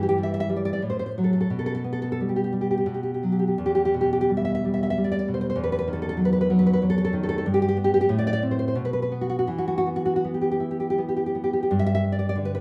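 Melancholic and wistful, this short excerpt from a longer romantic piece for solo classical guitar moves in 3/4 with a rubato feel, drifting between 77 and 98 BPM in E minor. A single nylon-string guitar carries everything, fingerpicked and up front, its full-bodied, deep classical tone spanning E2 to E5. A slapback echo trails its notes, and a wet studio reverb sits alongside the small-room sound of a rough home demo mix. The harmony passes from Em/G through Am6 and Gadd9/B to a bare B5, settles on Em at 3.6 seconds, then leans into Badd11/E, G and Amadd11 before a brief unharmonised moment. An E5 sonority arrives at 9.5 seconds, and the guitar lands on G at 11.7 seconds as the fragment closes.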